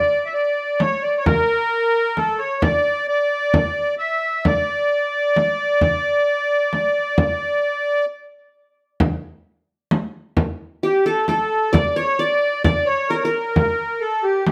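A reedy, sweet yet dark accordion with light tremolo tuning leads this hypnotic, longing Arabic maqam ensemble piece, its smooth melody sitting up front in plate reverb. A deep, large frame drum, also up front and sounding like a small room, joins at 0.8 seconds, driving a straight 10/8 metre at 132 BPM in eighths, tuned to A4 = 437 Hz. After a brief stop at 8.1 seconds, a bright-edged acoustic qanun, plucked with fingerpicks on triple strings, enters softly beneath at 10.8 seconds with a second line, all within a wet studio ambience in this passage cut from a longer piece.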